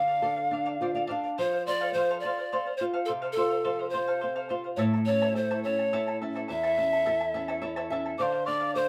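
Festive yet melancholic, this short excerpt of Andean folk for a small ensemble moves in a straight-feeling 6/8 through a D minor, F, A and back to D minor progression. An airy wooden pan flute carries the melody, sitting close and up front with a soft attack and gentle vibrato. Beneath it, a bright charango adds a shimmering bed from its double strings, some doubled at the octave. Alongside, a small, warm nylon-string guitar, also close in the mix, adds short fills near 0.5 and 7.3 seconds; both string instruments are fingerpicked. At 8.2 seconds a breathy, mellow cane quena enters with a tongued, hollow second line high above, touched with its own vibrato. A small, reverberant room surrounds the ensemble.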